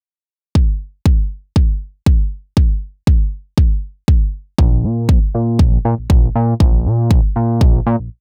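A punchy, layered electronic kick drum opens this sleek, groovy nu-disco excerpt at 0.6 seconds, sitting up front with a tape-warm, produced thump at 119 BPM in straight 4/4. At 4.6 seconds a fat analog bass joins, thick and nasal with detuned sawtooth and square-wave tones, a fast-attack filter pluck and sustained notes ranging from Bb1 to Bb2. The dry mix keeps both parts close and present.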